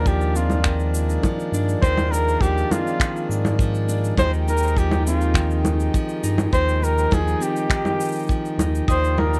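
Lightly reverberant, this delicate, pastoral folktronica excerpt is led by an up-front flugelhorn in a soft-attacked jazz style, with light vibrato, scooped notes and a trail of delay. Beneath it a reedy, breathing pedal harmonium holds dark, smooth chords, a bright, full-bodied nylon-string guitar fingerpicks delayed arpeggios, and a round, deep sine sub bass sits prominently. A tight, dry acoustic kick and a tape-colored electronic kit of shaker, congas and finger snaps carry a straight pulse, and a mellow, bell-like glockenspiel rings one brief note at 8.9 seconds.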